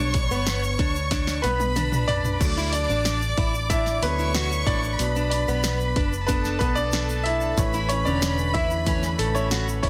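Piano-driven pop with a hopeful, uplifting mood, this short excerpt moves in a straight four-four feel over a G, D, B minor and A progression. A clear concert grand piano sits up front, its deep bass and smooth tone carrying the accompaniment and a solo that runs the full length. Underneath, a vintage muted electric bass gives a dark, round, foam-muted low end, while a fingerpicked steel-string acoustic guitar plays a riff with fresh strings and audible finger squeak. A close, bowed violin section adds a second line with vibrato and an even ensemble sound. The electronic, layered drum kit hits with a punchy kick and snare and bright hats, dropping in a fill between 1.1 and 2.4 seconds, and a grainy tube shaker sits dry in the background. Studio reverb and a dense, heavily limited modern master give the mix a polished, full finish.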